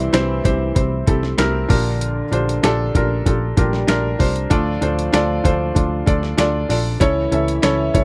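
A straight 4/4 pulse at 96 BPM drives this dramatic, propulsive piano-driven pop excerpt in D minor, cut from a longer piece. A dusty soul sampler-style drum kit sits up front from 0.1 seconds, its compressed, gritty sound built on a thumpy kick, a medium-tuned snare and hi-hat with a tape-tinged character. Beneath it, a vintage muted picked electric bass stays low between Bb1 and D2, its foam-muted tone round, amped and punchy. The felt-muted upright piano carries the accompaniment close and intimate, soft and mellow with short sustain and audible action noise, moving through C, Gm7/Bb, Dm and A/C#. A dark French horn section adds a distant, roomy second line in classical style, set well behind the other parts, all within light reverb.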